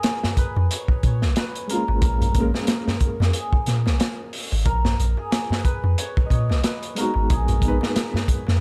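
A crunchy, saturated breakbeat kit sits up front in this short, melancholic trip hop fragment, its tight kick, medium-tuned snare and hi-hat carrying a gritty, rolled-off tone at 91 BPM with a 16th-note swing. A soft 808-style bass enters at 0.6 seconds, deep and round with a fast attack that decays, and it is the loudest voice in the mix. At 1.7 seconds a felt-muted upright piano joins in accompaniment, its intimate, thick-felt sound carrying audible action noise, with tremolo and tape echo. Above it all a hammered cimbalom plays the melody, shimmering and ringing through vintage 12-bit sampler grit and tape echo, while a very quiet darbuka adds close, dry clay-shell percussion. Set in Bb phrygian and moving from Bbm7 to B6, the cinematic mix is echo-heavy yet dry of reverb, and it is cut from a longer piece.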